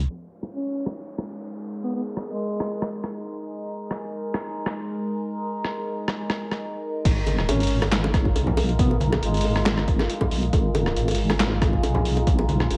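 A half-time 4/4 pulse at 138 BPM carries this brooding, heavy deep dubstep excerpt in G# dorian, where a muffled, pitched-down trip hop sampler-style kit of snare, hats, rim clicks, handclaps and crash sits under a long filter sweep while a faint electronic downlifter falls away in the background. A mellow, folk-style duduk with vibrato and scooped notes sings through 12-bit sampler grit and dub echo, over a resonant, chorused drone whose overtones move through a phaser. The drop lands at 7.1 seconds with a dark, wobbling sawtooth bass up front and a punchy layered electronic kick, joined by ringing bongos and congas played with hard hands and an airy, wind-like tuned noise texture that drifts in at 8.2 seconds, all set in an echo-heavy, low-passed chamber reverb.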